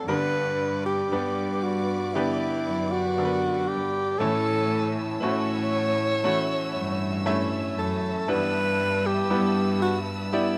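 In a straight 4/4 pulse, this emotional, longing pop ballad excerpt puts a clear, close-miked alto saxophone up front, carrying a jazz-style melody with vibrato over a bright, woody upright piano whose worn, slightly detuned tone and audible action noise feel intimate. Lush bowed strings hold sustained chords above, while a distant, earthy cello section carries the bass with light vibrato, and a dark, full-bodied steel-string acoustic guitar picks arpeggios in the background through G, A and Em/G. Small room ambience and a rough home demo mix give the whole excerpt a homespun closeness.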